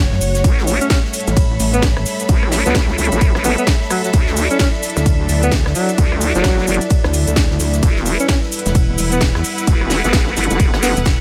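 Bass house at 130 BPM with a swung, swaggering bounce, cut from a longer piece: a punchy, up-front electronic kick and a house kit of cracking snare, metallic hats, cabasa, ride and rim click drive it, while a very quiet jazz brush kit adds soft snare and hat beneath, and a short drum fill arrives at 10.8 seconds. Two wobble basses carry the low end with sidechain pumping: a nasal, formant-filtered vowel-sweep bass with overdrive, and a heavy, detuned pluck bass that drops out between 2.0 and 5.0 seconds. Over the A7, Dadd9 and Em changes, a moody analog pad sustains in the background and a smooth bowed string section adds texture, while a breathy, close-miked alto saxophone plays a jazz-style solo through digital delay.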